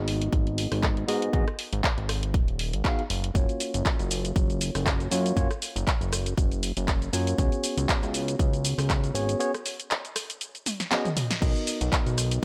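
A swung sixteenth-note groove in 4/4 drives this sensual, groovy nu-disco excerpt, built on a punchy, up-front electronic kick layered with a house drum kit of snare, bright hats, handclaps, rim clicks, shaker, toms and crash. A fat, detuned sawtooth analog bass with a wave-folded edge and a filter sweep holds the low end, while a clean tine electric piano with dub echo moves through G#m7, F#maj7 and C#7sus4 inside a digital ambience. A break arrives at 9.4 seconds with a drum fill at 10.7, and the drop at 11.4 lands on Bmaj7.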